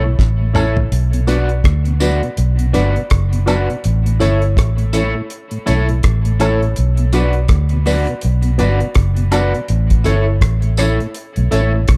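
A 4/4 groove at 82 BPM with a 16th-note swing opens this meditative, serious roots reggae excerpt in B minor, as a cloth-damped drum kit with a fat snare and tight kick plays a fill from 0.2 to 0.9 seconds before settling up front beside a round, foam-muted fingered electric bass. The chords move between A and B minor under a twangy, slightly broken-up electric guitar steeped in tape echo, stabs from a worn, long-sustaining baby grand piano, and a clean tonewheel organ set back in the mix with chorus vibrato and a slow rotary speaker. Vintage, band-limited tambourine and woodblock join at 0.6 seconds, and the echo-heavy mix sits in light studio reverb.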